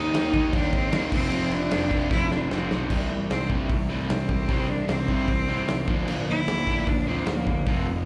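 A straight 4/4 punk rock drive at 151 BPM in C mixolydian pushes this rowdy, energetic clip, cut from a longer piece and heard as a live gig through a club PA, with a big, dark rock drum kit up front (punchy kick, medium-tuned snare, crash and hi-hat) whose fill from 2.1 to 2.9 s hands off to a cello solo. The rich, intense bowed cello, one player with vibrato and a smooth top, carries the melody from the start, coloured by slapback echo and digital delay, over a chord movement from Eb and F to C and Bb/D. Behind it, overdriven electric and hollow-body guitars, one with slapback echo, churn the riff with a very quiet, double-tracked thick fuzz guitar, while a bright, growly fuzz-and-overdrive picked bass sits in the background.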